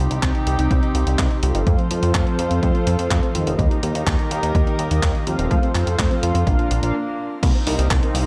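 Italo disco with a melodramatic, danceable pull, this short cut from a longer piece sets a punchy overdriven kick and a clean, tape-warm sampler-style drum machine of crash, handclaps and hi-hat under a glossy, nasal chorused synth bass, while dark, reedy chamber strings hold sustained chords, mellow brassy synth stabs carrying 12-bit grit and a soft, round plucked arpeggio sit in the background under tape echo and shimmer reverb, as an analog polysynth filter sweep runs through the whole section, with a brief break arriving at 6.9 seconds.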